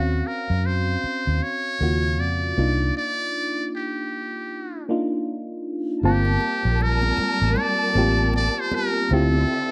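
Smooth and late-night, this slow neo-soul R&B excerpt at 78 BPM in G minor swings gently, with a buzzy, metal-muted trumpet carrying the melody up front over a mellow FM electric piano whose warbling chorus colours the chords, and a round, punchy foam-muted electric bass anchoring the low end. After a break from 2.9 to 6.0 seconds, a veiled con sordino string section enters in the distance with lush sustained chords, and high-tuned congas, very quiet and close, join at 6.3 seconds. Light studio reverb gives the whole a soft, intimate sheen.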